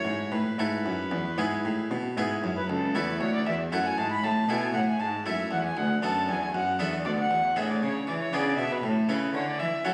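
Radiant and serene, this brief baroque-style sonata excerpt in a lilting 12/8 sets a reedy, gut-strung violin melody over a round, Italian-style harpsichord and a nasal period cello, heard as if through a phone in a reverberant recital hall, with the harmony settling from a suspended opening toward a cadence home at 8.8 seconds.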